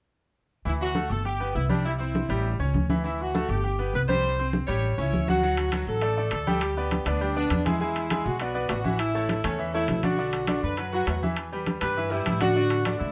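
Festive and danceable, this salsa excerpt puts a punchy, present horn section up front on the melody with light vibrato, over bright, brilliant baby grand piano chords with short sustain and a growly, woody pizzicato upright bass. Ringing congas played with soft hands drive the groove from the start, and dry metal-shell timbales join at 5.6 seconds as the harmony moves into a new passage. Close, detailed microphones and light reverb keep the sound intimate and crisp.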